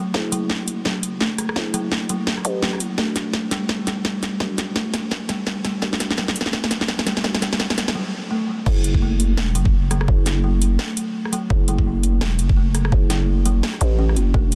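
A woody, dark kalimba opens at 0.0 s with filtered arpeggios trailing dub echo, joined almost at once by a growling, buzzy 808-style bass pushed up front with tube saturation, in a heavy yet spacious half-time drum and bass cut from a longer piece at 169 BPM in F# phrygian with swung 16ths. A tape-toned, layered electronic kit with a cracking, soft-clipped snare, metallic hats, rim clicks and crash, over a knocking electronic kick, runs a fill through the F#m to Em build-up, then breaks at 8.0 s before the drop lands on F#m at 8.7 s. Light reverb sits around a dense, heavily limited modern master that carries audible lossy compression artefacts.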